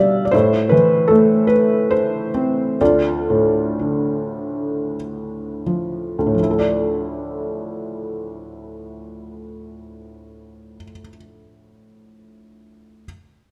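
Classical solo piano in a lyrical, wistful vein, this short excerpt from a longer piece unfolds in 3/4 with a free, rubato feel in D dorian, its pulse drifting between 40 and 82 BPM. A felt-muted upright piano carries everything alone from 0.0 to 13.1 seconds, spanning D2 to G5 with a soft, mellow, intimate voice that sits up front, its audible action noise adding a close, private quality. The tuning rests at A4 = 437 Hz, lending the instrument a slightly lowered pitch center. The opening passage slows from 0.3 to 6.4 seconds as the harmony moves from Am to Dm, and a second passage begins at 6.4 seconds on a Dmadd9 chord. A moderate recital hall reverb with a 1.5-second decay surrounds the muted tone, deepening the melancholic mood.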